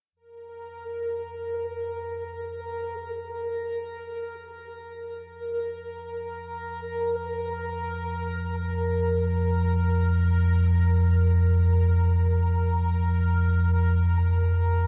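Dark ambient drone, ominous and vast, cut from a longer piece and set in a vast, echoing space with a heavy cathedral reverb. A deep, rumbling, detuned synth drone sits up front from 0.4 seconds, warbling with a vintage sawtooth-and-triangle tone as a filter sweep runs across it. Above it, a quieter bubbling texture of resonant random filter steps enters at 0.3 seconds, softened by chorus and a shimmer reverb.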